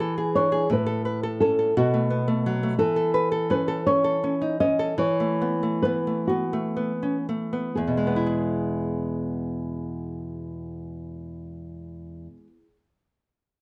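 Serene and warm, this fragment of a romantic duo in a rubato 6/8 pairs a dark, woody, full-bodied nylon-string guitar singing the thumb-plucked melody on old strings with a small, up-front, fingerpicked nylon-string guitar accompaniment, the pace slowing between 1.8 and 7.8 seconds before the melody ends at 12.2 seconds, all framed by a moderate studio reverb.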